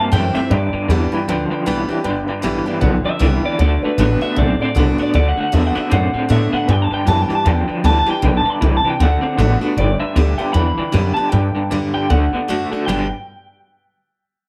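A lightly reverberant rockabilly recording cut from a longer piece, with a retro, rollicking swing feel. Up front, a thumpy, woody upright bass on gut strings is plucked from 0.1 s, beneath a full-bodied, picked dreadnought acoustic with audible finger squeak and a dark, mellow upright piano sitting in the background in plate reverb. Two slightly broken-up, lo-fi electric guitars through a small old amp complete the arrangement: one plays a warm, twangy lead melody with tape echo, while the other, brighter, plays a low riff through tremolo.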